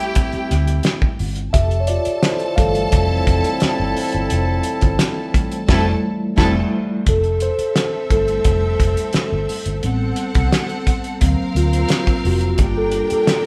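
A moderate stone-room reverb surrounds this lush, romantic 1970s-style soul excerpt in F major at 87 BPM, where a mellow, clean tine electric piano takes the solo throughout over a cloth-damped, thuddy drum kit with a fat snare and dark cymbals, a round, foam-muted fingered electric bass, a clear, bowed studio string section with vibrato carrying a second line, and a smooth-topped horn section whose stabs stop at 6.6 seconds, during a band accent that begins at 5.7 seconds, as the chords move from Am7 and Fmaj9 through D7alt to Gm7.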